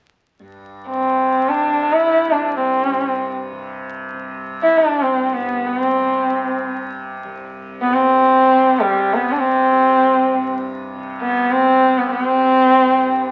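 Crackle from a very old 78 rpm record sits over a wet studio reverb, lending this Hindustani classical fragment, cut from a longer piece, the aura of an archival disc. A tanpura drone enters at 0.4 s, softly plucked and buzzing, its shimmering low strings held far back beneath the melody. At 0.9 s a single bowed sarangi takes the lead, up front and dark, with a nasal, boxy voice ringing with sympathetic strings. Its line glides between notes with portamento and expressive vibrato, each phrase beginning with a soft attack. The mood is devotional and serene, a quiet meditation carried by one singing bow over the drone.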